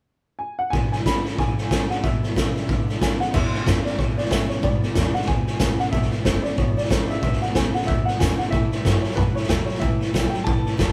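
A dark, worn upright piano opens the clip at 0.4 s, carrying the melody with a mellow, slightly detuned tone and audible action noise that gives it an intimate, vintage character. At 0.7 s the drums and both guitars kick in on an E7 chord for a retro, rollicking rockabilly groove at 185 BPM in 4/4 with a swung feel. A raw garage drum kit sits up front with crash, hi-hat, a boomy kick and a medium-tuned snare, its gritty, saturated sound rolled off at the top. Underneath, a twangy electric guitar through a small old amp plays a slightly broken-up riff in the background, while a bright, full-bodied steel-string acoustic guitar adds very quiet picked accompaniment. A woody, thumpy upright bass on gut strings enters very softly at 3.3 s, and the harmony moves to A7 near the end of this short cut from a longer piece, all bound together by light reverb that gives the feel of a band playing live in one room.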